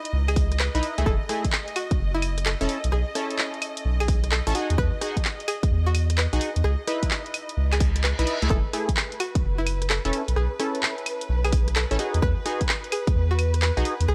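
A swung two-step garage groove at 129 BPM drives this bouncy, late-night excerpt, with a punchy, layered electronic kick and a dry analog drum machine of claves, handclaps, hi-hat and rim clicks up front under studio reverb, while a round, deep dub sub bass with tube saturation anchors the low end. Chorused, detuned sawtooth chord stabs with 12-bit sampler grit and tape echo cycle through C#m9, F#m9, B9sus4 and Emaj7, as a twangy, nasal resonator pluck carries the melody and a distant, smooth bowed violin section holds sustained chords that pump with sidechain. A reverse cymbal enters in the background at 7.8 seconds, all set in a digital ambience.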